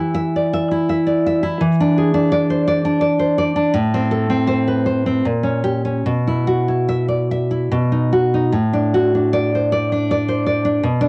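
Intimate and wistful, this short passage from a longer romantic piece for solo nylon-string guitar unfolds in a rubato 3/4, its warm, deep classical tone fingerpicked up front with audible finger squeaks. The harmony drifts from E minor through E7 and A minor to a shaded A#m6 and a Bsus4 resolving to B, closing on D7/A at 8.5 seconds. A moderate studio reverb surrounds the guitar, and the home cassette recording lends a soft tape character.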